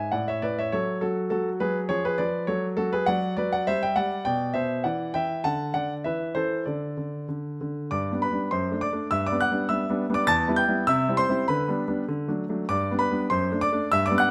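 Closely miked and detailed with a light touch of reverb, this short cut from a classical-period piano sonatina puts a warm baby grand up front, its natural tone and short sustain giving each note a crisp clarity. Played solo across a range from E2 to A6, the piece has a playful, cheerful character and a gently rubato feel in 2/4. Its opening phrase wanders through minor and diminished colours before settling at 3.1 seconds, and a second section from 7.9 seconds turns to bright, straightforward harmony.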